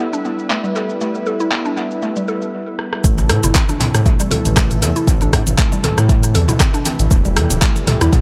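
An echo-heavy, lightly reverberant afro house excerpt at 118 BPM in A minor, hypnotic and driving, opens with a warbling vintage analog pad holding sustained chords and a woody, round mallet-like FM pluck playing arpeggios through tape echo. A tape-softened, filtered deep house kit of cabasa, handclaps, hi-hat, rim click and toms with dub echo joins them until a short break and drum fill give way at 3.0 seconds to a drop. There a deep, up-front electronic kick and a smooth, nasal, detuned synth bass pumping against it arrive, followed moments later by very quiet soft-handed congas, as the chords move from Em to Am and back to Em at 7.1 seconds.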